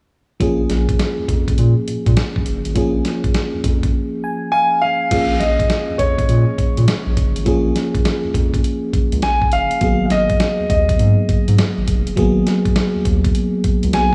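This slick, bouncy new jack swing excerpt rides a swung sixteenth-note groove from a gritty, compressed sampler-style drum kit, its thumpy kick, medium-tuned snare, hi-hat and crash sitting up front. A round, deep analog bass anchors the low end with sustained notes, while a glassy, bell-like FM electric piano with chorus supplies full-bodied chords, moving from A#m7 to G#m9 later on. The drums drop out between 3.9 and 5.1 seconds while the electric piano plays a short fill. A dark, smooth baby grand piano carries the melody from 4.5 seconds, its vintage tone colored by tape echo. Light small-room reverb lends the mix a subtle sense of space.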